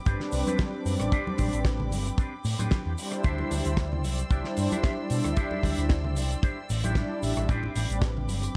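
A tight, dry kick drum sits up front in this sleek, groovy nu-disco excerpt, moving at 113 BPM in 4/4 with a light 16th-note swing in A minor. Beside it, a round, amped picked electric bass holds the low end, while a damped 70s drum kit with a fat snare and rolled-off top adds hi-hat, rim click and shaker in a small room ambience. Bright, thin-skinned congas enter at 0.5 seconds and stay in the background. A dark, clean electric guitar plays a picked riff through an envelope filter with subtle chorus, over a mellow, detuned sawtooth pad that carries chorus, vintage 12-bit sampler grit and slapback echo. Above them, an intimate chamber string section holds bowed chords with light vibrato and sidechain pumping as the harmony moves from Am11 to D9sus4 at 3.2 seconds and back to Am11 at 7.5 seconds, all within a dark, warm production.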